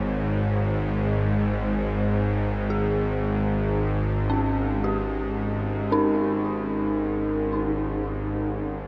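In a straight, slow 4/4 at 56 BPM, this cavernous, desolate dark ambient drone excerpt, tuned to A4 = 437 Hz and resting on a G#sus2 chord, sets an up-front, tense, string-like sawtooth drone with detuned unison voices, a noise layer, vibrato and its own reverb against a pure, ringing quartz singing bowl that sits in the background with slow beating under a wooden striker, while from 2.7 s an eerie, inharmonic FM synth bell adds arpeggios through chorus, phaser and a diffuse ambient delay, all within a dreamy mix soaked in huge reverb.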